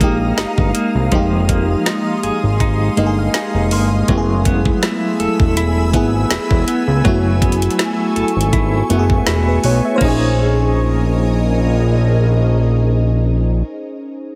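Contemporary R&B at 81 BPM with a sensual, longing mood, cut from a longer piece, where a glassy, bell-like FM electric piano with chorus plays accompaniment and a fill from 2.6 to 4.1 seconds over an ethereal, airy pad with phaser, tremolo-and-tape-echo arpeggios on a clean, direct-recorded electric guitar, a fat, saturated analog bass up front, and a smooth drum kit with knocking kick, woody snare and metallic hats that stops at 10.2 seconds, as the chords move from Fm11 to Gbm11 to Bbm11, all under a heavily compressed radio sound with light reverb.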